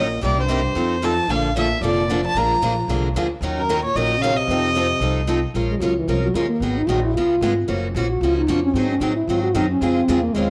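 Fiery and virtuosic, this excerpt of jazz manouche swings at 225 BPM in Bb minor, with a nasal, reedy violin carrying the bowed melody up front until 5.4 seconds while a dark French horn plays a second line and then takes a solo from 5.5 seconds. Two picked steel-string acoustic guitars supply the accompaniment, one bright and up front with audible finger squeak, the other boxy and parlour-like in the background, dropping out at 5.4 seconds before returning at 9.8 seconds, as a woody, thumpy pizzicato upright bass with gut strings and transformer saturation anchors the low end. The cassette home recording is bathed in a wet spring reverb.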